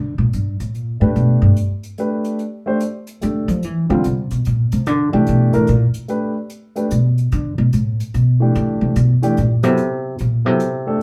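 Swinging in 3/4 at 146 BPM, this sophisticated jazz piano trio excerpt opens on a woody, pizzicato upright bass soloing up front from 0.0 s, joined by a faint, airy brushed hi-hat and, from 1.0 s, a dark, mellow baby grand piano up front with long sustain carrying the melody, the whole trio heard from further back in a wet club reverb.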